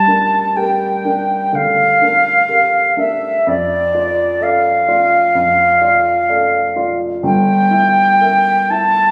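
In a loose, rubato 4/4 at about 62 BPM, this brief romantic classical duo for flute and grand piano unfolds in D minor, tuned to A4 = 441 Hz, with a melancholic, solemn mood. The concert flute carries the melody from D5 to A5 throughout its 9.1 seconds, with an airy, straight tone and soft attack that sits up front in the balance yet carries a slightly distant quality. Beneath it, a dark baby grand piano supplies the accompaniment from G1 up to E5 at a lower level, its mellow, natural sound marked by short sustain. The harmony moves from Gm7 to Dm/F at 3.5 seconds and on to Edim/G at 7.2 seconds, in an excerpt cut from a longer piece. A moderate recital hall reverb surrounds the performance, and the phone recording made in the room carries a club ambience.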